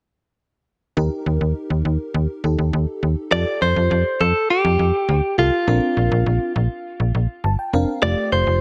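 Wistful yet bright, this short synth-pop fragment opens on an Eb chord before settling into Fadd9 and Bbadd9 harmonies, all in a steady, straight four. An FM electric piano layered with a soft pad supplies the accompaniment, its tone lush, dreamy and dark, with a detuned, full-bodied character shimmering through chorus and tremolo. Beneath it, a slap-like FM bass sits up front with a snappy, metallic attack that then decays, giving the low end a digital bite. At 3.3 seconds a clean electric guitar, recorded direct and compressed, takes the melody with a picked, up-front sound and a trail of delay. The electric piano adds a brief fill near 7.1 seconds, and a light reverb gives the whole passage a gentle sense of space.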